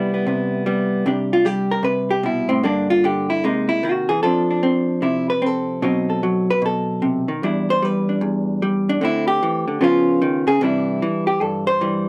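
A swung 4/4 pulse at 151 BPM, with eighth notes leaning into a 65% swing, drives this short solo jazz piece in C major, cut from a longer performance. A lone vintage hollow-body electric jazz guitar carries everything, its clean, picked tone dark and compressed, sitting up front under a light reverb. After a brief opening on Cmaj7, the guitar launches into its solo at 1.0 seconds and keeps it going until the close at 12.1 seconds, ranging from a low E2 up to C5. The harmony moves through colourful changes such as Csus2, C7alt, F6, B7b9 and Db7 before settling on Cadd9. The overall mood is swinging and warm, an unaccompanied moment for the guitar.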